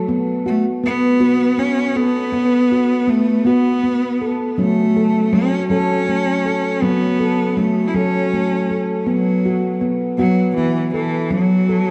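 World meditative music in a slow 6/8 at 53 BPM, this gentle, contemplative piece is cut from a longer work and unfolds as a single section tuned to A4 = 439 Hz. A nitrided steel handpan opens at 0.0 s with ringing, airy arpeggios played with sharp finger strokes, sitting up front between F#3 and A4. A single bowed cello enters at 0.5 s, carrying a focused, vibrato-rich melody between E3 and E4, also placed up front. Both parts are bathed in a diffuse ambient delay, and the whole is set in a wet echo chamber reverb with a dark, warm production. The harmony moves unhurriedly between B5 and F#m, sustaining a calm, meditative atmosphere through to 11.9 s.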